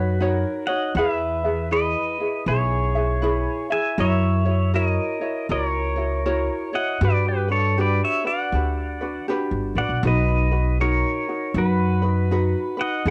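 Languid and sunny, this short Hawaiian excerpt drifts along with a gentle swing in 4/4. An electric pedal steel guitar carries the melody up front, its clean, compressed tone shaped by fingerpicks, slide and volume swells. Beneath it, a light acoustic ukulele is fingerpicked in accompaniment, its sound colored by cassette tape. A pizzicato upright bass with steel strings sits prominently in the mix, woody and thumpy. All three parts play together from 0.0 to 13.1 seconds. The harmony moves from Badd9 through E, F#7, Gmaj7 and Bmaj7, and the whole has the warm feel of a home cassette recording with light reverb.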